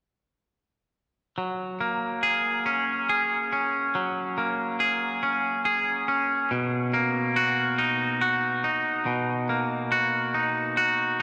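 Euphoric and hopeful, this rock fragment in a straight 6/8 is cut from a longer piece and carried by a single twangy electric guitar picking clean, bright arpeggios from 1.4 to 11.2 seconds. The compressed guitar sits up front while a wet, cathedral-like reverb with a long six-second tail fills the space of a church or concert hall. The harmony moves from F#add9 to Bmaj7 at 6.5 seconds.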